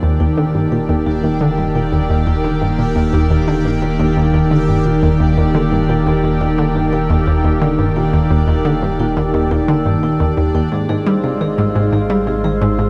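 Bathed in a huge, wet ambient reverb, this cosmic, expansive stretch of sequencer-driven space music moves at 87 BPM in a straight 4/4, sitting on Eb before shifting to Ab at 10.7 s. An up-front, thick, warbling unison pad holds sustained chords with chorus, while a bright, detuned analog pluck riff carries chorus and tape echo, and a deep sine sub bass anchors the low end. A metallic, ringing vibraphone played with hard mallets spins tape-echoed arpeggios, and a bubbling, resonant stepped-filter texture with chorus and its own reverb both fade in gradually across the passage.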